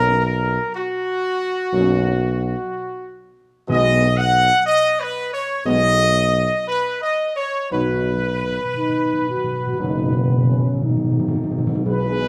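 In a straight 4/4 at a stately 56-62 BPM, this classical ceremonial fanfare in B major unfolds with a regal, triumphant bearing, cut from a longer piece. A clear trumpet section carries the melody up front, close-miked and shaded with light vibrato, while a dark French horn section with a smooth top holds sustained chords alongside a tight, clear trombone section that sits in the background. A mellow tuba anchors the bass beneath them, and timpani struck with medium mallets on plastic heads sound close and dry, playing a fill from 7.7 to 11.9 seconds. The harmony moves from F#/B to G#m/B at 3.7 seconds before settling on B at 7.7 seconds. Detailed microphones capture the brass within a moderate recital hall reverb that lends the ensemble a dignified sense of space.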